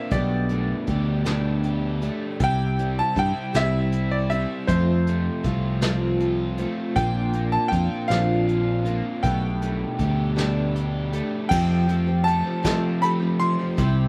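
The recording is dry and close, a hopeful, nostalgic slice of folk rock and heartland rock in a slow, swaying 6/8 that is cut from a longer piece. A brilliant, slightly worn grand piano carries the melody up front with a slapback echo, over a dark, shimmering twelve-string acoustic guitar, also echoed, and a crunchy, double-tracked overdriven guitar riff bathed in spring reverb. A round, prominent electric bass and a distant, roomy brush kit with a punchy kick support chords such as Gadd9/B, C, F and Bbadd9 before the music turns to a new passage on Fadd9 at 11.5 seconds.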